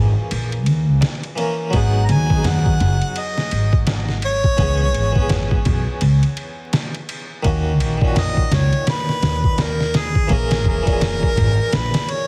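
Cinematic, smoky trip hop in G# minor at 84 BPM with a swung 16th-note feel, this short excerpt sets a bright, plucked harpsichord with tremolo and tape echo against a woody, growly pizzicato upright bass, a gritty, pitched-down sampler-style drum kit with a thumpy kick up front, a crisp metal-shell darbuka far in the background, and a distant, roomy harmonica melody with light vibrato entering at 1.8 seconds, all framed by heavily compressed radio sound and vinyl crackle.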